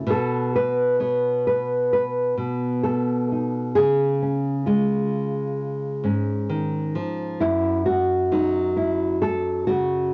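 The rhythm sits in a straight, unhurried four-four, giving this short folk passage a calm, steady pulse. A lone nylon-string guitar carries everything for the full 10.1 seconds, played fingerstyle in a classical manner with thumb-plucked notes that span from a low F#2 up to C#5. Its fresh strings ring with a warm, acoustic tone, placed up front and colored by the soft grain of cassette tape. The harmony opens unaccompanied by chords before settling on C# at 3.8 seconds and moving to an open F#5 at 7.4 seconds. A moderate booth ambience and the homemade cassette sound lend the moment an intimate, peaceful and hopeful character, like a brief window cut from a longer piece.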